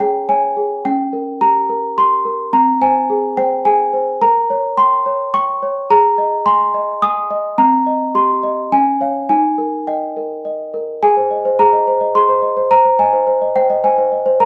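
Dreamy and tender, this short classical lullaby for celesta moves at 107 BPM in a gentle 3/4, settled in A-flat major. A small celesta plays alone for the whole 14.5 seconds, its bell-like, sweet tone struck with medium felt hammers and ranging from C4 up to E-flat 6. The instrument sits up front, delicate and airy, while moderate studio reverb places the listener a little further back in the room. The harmony drifts through colours such as B-flat minor and a diminished chord before turning through C minor, D-flat and E-flat back home to A-flat. At 11.0 seconds a new section begins on the tonic, and the passage is cut from a longer piece.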